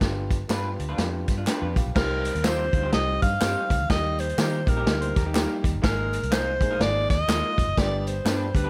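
Uptempo 1960s-style soul with a passionate, driving swing, built on a dark-cymballed vintage drum kit up front, a round, foam-muted fingered electric bass and an open baby grand piano that adds a fill at 1.2 seconds, while tambourine and handclaps sit close and dry in the background, a slightly broken-up electric guitar through a small old amp plays lush-chorused stabs from 0.5 seconds, a clean hollow-body jazz guitar slips in two brief riffs, and a breathy alto saxophone with vibrato and subtone takes the melody from 2.0 seconds.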